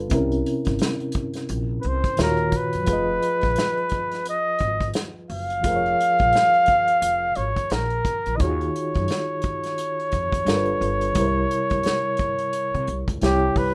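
An up-front flugelhorn with vibrato, scooped notes and a slapback echo enters at 1.8 s to carry the melody over a reedy electric piano with fast tremolo, a woody pizzicato upright bass and an unplugged drum kit played with bundle sticks, in this introspective, soulful 87 BPM neo-soul cut from a longer piece, which has a swung 16th-note feel, moves through rich chords such as C7b9, Ebm9 and Fm7b5 before settling on C, and is captured as a rough home demo in a wet small room.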